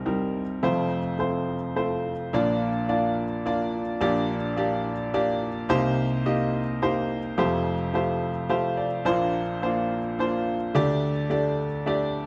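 A clear, intimate baby grand piano plays alone from the first moment to 12.3 seconds, up front with its action noise audible, in a tender, nostalgic folk waltz that moves from a brief opening phrase into a longer passage at 2.3 seconds, its chords ringing in a moderate large-studio reverb in this short cut from a longer piece.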